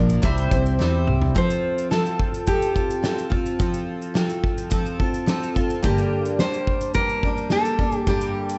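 A straight 4/4 groove from a loose, roomy indie drum kit, with a fat snare and punchy kick, carries this heartfelt, easy-going acoustic pop piece, and a drum fill at 0.8 seconds rounds off the brief opening where a concert grand piano and a round, amped fretless bass sound only for a moment. A bright, double-tracked steel-string acoustic guitar plays its picked dreadnought accompaniment throughout, and at 1.4 seconds a full-bodied nylon-string guitar takes the melody, fingerpicked with audible finger squeak and touched with analog delay. A moderate spring reverb and a dark, warm production soften the whole blend.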